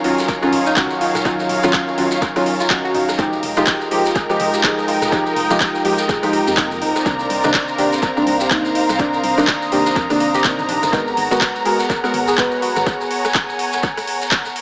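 Heard through a small-speaker sound and soaked in echo-chamber reverb, this cut from a longer deep house track moves at 124 BPM in 4/4 with a 16th-note swing, its mood hypnotic and late-night. A deep, mellow chord stab carries the harmony through Ebm9, Fm9, Cm9 and Abm9, its soft, dark tone shaped by a filter sweep, subtle chorus, sidechain pumping and dub echo. Beneath it sits a smooth, detuned analog pad with chorus and pumping, a rich studio string section and a very quiet, focused violin section. A very quiet, round pluck spins gentle arpeggios with ring modulation and a sub octave, while a hollow, organ-like FM bass lurks in the background with tube saturation until 12.8 s. The overdriven drum kit sits up front with metallic hats, handclaps and rim clicks in small room ambience, joined at 0.2 s by grainy, distant maracas washed in dub echo and at 0.3 s by a deep, overdriven electronic kick.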